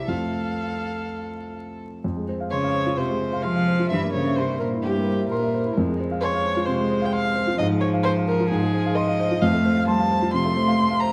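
A wet recital-hall reverb surrounds this short cut from a longer piece, with a layer of vinyl crackle over the sound. It is a quick, graceful and lively classical-period movement for piano trio in F minor, moving at 130 BPM in 4/4 with a rubato feel and tuned slightly high, to A at 441 Hz. A dark, woody violin carries the melody from up close, played with vibrato and bowed sul tasto. Beneath it, a rich, pure cello sings a second line with a soft attack, also sul tasto, floating at a distance. A mellow concert grand with a deep bass sits up front in the accompaniment. All three play throughout, and after a brief opening a new section begins at 2.0 seconds, with the harmony moving from F through F minor and C7 over G before closing back on F major at 9.4 seconds.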